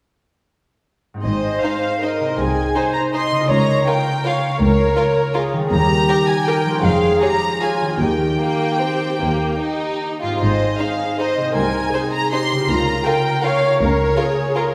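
A ringing concert harp opens with arpeggios at 1.1 s, and the bowed strings join almost at once in this elegant, sweeping classical excerpt in Ab major and 3/4, flowing with rubato at 142-174 BPM: an up-front violin section carries the smooth, vibrato melody; a second, focused violin section adds a counterline; an intimate viola section plays soft-attack sul tasto accompaniment; and a distant, dark cello section and a rich double bass section hold the bass, all set in a wet scoring-stage reverb.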